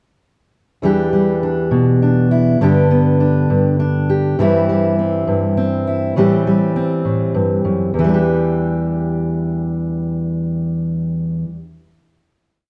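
A fingerpicked steel-string acoustic guitar carries this short, complete folk piece on its own, sitting up front with the warm ring of fresh strings and the occasional finger squeak. The mood is stirring and yearning, set in a gently swaying 6/8 with a straight feel. The guitar works through a rolling arpeggio across a single verse from 0.8 seconds, moving through Em7, G, C/G and Am7 and spanning from its low bass strings up into its middle register. At 7.9 seconds it settles onto a final Em7 chord that rings out until the close. The performance was captured live, wrapped in the reverb of a stone room that gives the picking an auditorium-like sense of space.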